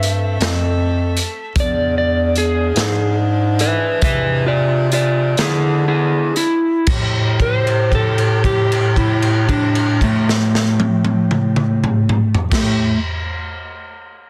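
A dense, heavily limited mix with small-room ambience carries this smoky, brooding slow blues in 12/8 and A minor, moving from Am7 to E7b9 at roughly 38-53 BPM. Up front, a dark, slightly broken-up electric slide guitar solos while slowing down through the first 6.9 seconds, then holds a note until 12.5 seconds, over a mellow bass clarinet with light vibrato and subtone and a gritty, boomy garage drum kit with a pumping room sound. A saxophone section with vibrato sustains jazz-style chords in the background of this passage cut from a longer piece.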